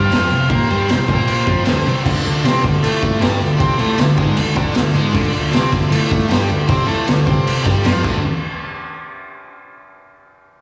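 A straight 4/4 pulse drives this gritty, menacing garage rock cut at 155 BPM in D minor, taken from a longer piece and heard as a live gig through the venue's PA with recital hall reverb and small room ambience. A buzzy, clean vintage combo organ opens with a brief melodic solo, its spring reverb and slapback echo trailing the line until 1.6 seconds. Underneath, a mellow second organ holds sustained chords in the background. A bright, double-tracked thick fuzz guitar picks a distorted riff with slapback echo, while a punchy fingered electric bass adds overdrive and tube saturation to the low end. The raw garage drum kit sits up front with a boomy kick, high-tuned snare, crash cymbal and a saturated, rolled-off top, and a jingly tambourine rings very quietly from a distance. The band settles onto D minor at 2.0 seconds, and a drum fill at 8.0 seconds closes the passage.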